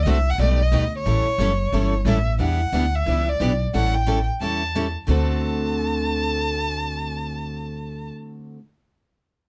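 Charming and lively, this short cut of acoustic string swing in the jazz manouche style moves at 179 BPM in D major with a swung eighth-note feel, passing through chords such as B7alt, A7, Em7 and D7. A dark, bowed violin carries the melody up front with expressive vibrato and portamento, while a woody, thumpy upright bass with gut strings is plucked up front from 0.0 s. Two bright, picked steel-string acoustic guitars with fresh strings supply accompaniment until 8.6 s, one showing finger squeak and the other sitting in the background, all captured by close, detailed microphones in a dry room.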